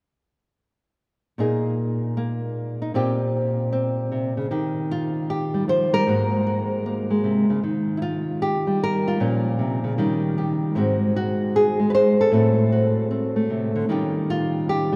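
A dark, small-sounding nylon-string guitar, fingerpicked and up front, plays a sophisticated, relaxed solo jazz piece with a swung feel from 1.4 to 15.0 seconds, moving through extended chords such as Ebadd9, Ab9 and Am6 inside a vast, echoing cathedral reverb, in a passage cut from a longer performance.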